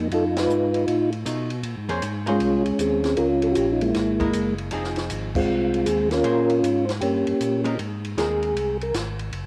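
Soul jazz organ trio in Ab major at 156 BPM, swung in 4/4 with a soulful, bluesy mood, cut from a longer piece and heard through cassette tape, faint mains hum and spring reverb in a small room. An up-front, flute-like percussive tonewheel organ carries the melody through slow rotary speaker and chorus vibrato, while a second, lightly overdriven tonewheel organ with key click plays the bass line and takes a solo from 7.8 seconds. A dry cocktail drum kit with dark cymbals, a high-tuned snare and punchy kick joins the band accents, and a hollow-body archtop guitar, clean and compressed, adds picked accompaniment from 1.3 seconds.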